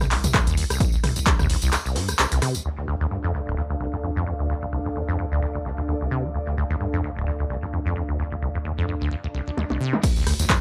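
Raw and hypnotic, this acid house excerpt at 130 BPM in D phrygian rides a squelchy, resonant sawtooth acid bass riff and a deep, saturated sub bass from the start, while a punchy, tape-warm analog drum machine, electronic kick, jingly tambourine and a distant, roomy big-band kit drive the opening drop before falling away by 2.6 seconds. The basses are then joined by an airy, breathy pad with chorus and sidechain pumping through the Dm section, until a background swell at 9.3 seconds and a drum fill at 9.6 seconds bring the beat back under light reverb.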